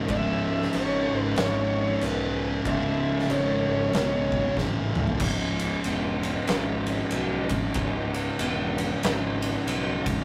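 A thick, up-front fuzz guitar drives this sludgy, heavy stoner and doom metal passage, cut from a longer piece, churning out a low picked riff over a swung pulse, doubled by a second fuzz guitar until 5.2 seconds. Beneath them, a fingered electric bass adds a bright, growly, overdriven bottom end. A dark, compressed lead guitar carries a short high melody that ends at 4.5 seconds. The oversized, low-tuned drum kit is gritty and pumping, with a boomy kick, fat snare, toms and dusky crash and ride cymbals, and it plays a fill from 4.6 seconds that leads into the second section at 5.2 seconds. The sound is a rough rehearsal-room recording with tube saturation and light reverb.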